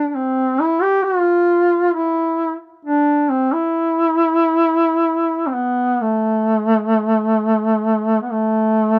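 A mellow duduk carries this mournful Caucasian folk lament alone, its soft attack, scooped notes and vibrato giving each phrase an aching, longing quality as it moves between A3 and G4 in A minor. The pace is a slow, rubato 66 BPM in 3/4, and the solo runs from 0.0 to 9.0 seconds as a brief fragment cut from a longer piece. The dry, close 1970s-style studio sound sits in a small room, with the duduk up front yet carrying a distant, roomy tone.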